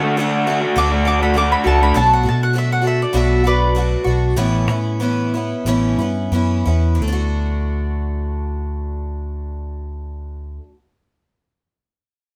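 A straight 4/4 pulse moving between 86 and 101 BPM drives this hopeful, open-road rock piece in D major, cut from a longer performance and slowing down from 1.9 to 7.0 seconds. A picked twelve-string acoustic guitar with a shimmering, octave-doubled archtop tone carries the accompaniment up front, while a fingered electric bass, dark and round, anchors the low end. A raw garage guitar, overdriven, lo-fi and double-tracked, plays a brief riff that stops at 1.9 seconds. A mandolin with a woody, double-string sparkle takes a second line from 0.8 to 4.7 seconds, standing out as the solo voice of the opening stretch. The chords move from D through Bm7 and Aadd9 before returning to D at 7.0 seconds. The band sounds like it is playing live in one room, with light reverb.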